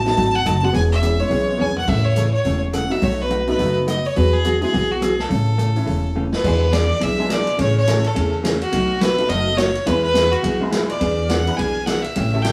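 A clear, focused fiddle carries the melody from the very start over a woody, thumpy upright bass, setting up a cheerful, playful western swing groove at 210 BPM with a lively swung eighth-note feel. The bowed fiddle sits up front with light vibrato and a slightly boxy tone, while the plucked gut-string bass stays dark and close. A jangly, detuned honky-tonk upright piano fills in the background with bright, short-sustain chords, and a dark, clean hollow-body electric guitar adds picked, compressed accompaniment. The big-band drum kit sounds distant and roomy, with a punchy kick and medium-tuned snare alongside ride, hi-hat, rim clicks, toms and crash, and it drops in fills at 1.6 and 6.2 seconds. Cut from a longer piece, the passage moves through a country progression built on B7, E6, A and Amaj7, with a second section arriving at 6.4 seconds, all set in a small room with moderate reverb that gives it the feel of a band playing live together.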